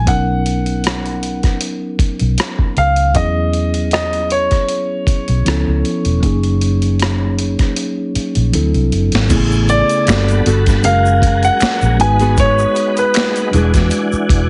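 Soulful and smooth, this neo-soul R&B excerpt at 78 BPM in F# major pairs a clear, long-sustaining grand piano melody with a mellow tine electric piano and a dark, round, foam-muted fingered bass over a gritty, pitched-down boom bap kit with a thumpy kick and high-tuned snare, then at 9.3 seconds brings in a slow-rotary tonewheel organ, a background egg shaker with finger snaps, and a fingerpicked nylon-string guitar line from 10.5 seconds, all through a heavily compressed, radio-like sound.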